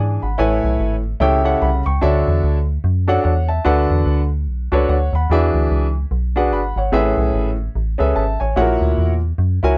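A grand piano and a metallic FM bass open this uptempo gospel excerpt together, setting a hopeful, jubilant mood at 147 BPM in 4/4 with a light swing on the eighth notes. The piano carries the accompaniment across a broad span from A2 to C#6, its tone warm, polished and present, sitting up front in the mix. Beneath it, the bass stays low between G1 and G#2, with a digital, dark character, a fast attack and decaying notes, also placed close and forward. The harmony in A major moves from Amaj9 through A7/C# to Dmaj9 at 2.0 seconds, then on to Bm7/D, E9, back to Amaj9 and finally F#7/A#, lending the passage a bright, uplifting lift. Tuned slightly low to A4 = 436 Hz, the dry, close sound recalls a 1970s-style studio, with little reverb around either part.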